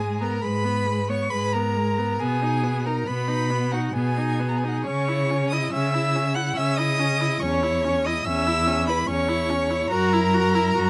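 A dark, expressive cello sits up front with portamento and vibrato beneath two rich, focused bowed violins, one carrying the melody and the other a smooth second line, while a clear viola plays the accompaniment in this melancholic, yearning, slow romantic string quartet movement in G# minor, played at 62-74 BPM in a rubato 3/4 and moving from G#m through C#m to F#7 with light reverb and close, detailed sound, cut from a longer piece.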